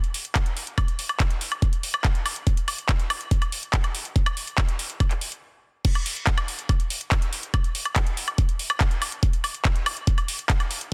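Driving and intense, this trance excerpt at 142 BPM in straight 4/4 is built entirely from percussion: a garage drum kit of crash cymbal, handclaps, metallic hi-hats and woodblock, joined at 0.4 seconds by a knocking, layered electronic kick that sits prominently up front. Both parts carry the character of a small room and little reverb, all inside a dense, heavily limited modern master. After a brief stop at 5.4 seconds, the track hits its drop at 5.8 seconds and rides it to the end.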